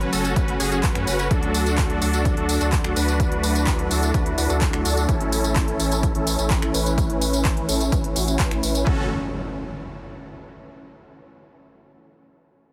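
A straight 4/4 pulse drives this anthemic, powerful slice of festival progressive house, where a punchy electronic kick joins at 0.4 s beneath a layered big-room kit of crisp hi-hats, finger snaps, handclaps and tambourine, while a huge, bright supersaw riff with tape colouring, dub echo and a filter sweep rides over a lush, warbling vintage pad with chorus and a deep, saturated sine sub bass, all three pumping against the kick through F#m, D and A, until an electronic impact lands at 9.0 s amid light digital ambience and a heavily compressed, radio-style finish.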